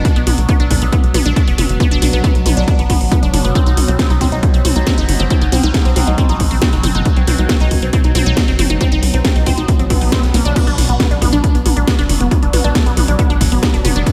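A straight 4/4 pulse at 137 BPM drives this industrial, intense stretch of peak-time techno in B phrygian, cut from a longer piece, with a punchy layered kick and a techno kit of cracking snare, metallic hats, toms and crash, the hats, toms and crash pumping beneath it, while a tight sawtooth sequencer bass pumps low. A juicy, squelchy resonant blip pluck carries the riff through phaser, cassette tape colour and a diffuse ambient delay, over a wave-folded drone with moving overtones, chorus and its own reverb, as the chords move from Bm to Cm at 3.6 seconds and back at 10.6 seconds. A brief electronic swell sounds in the background at 9.9 seconds, and the whole sits in light digital ambience.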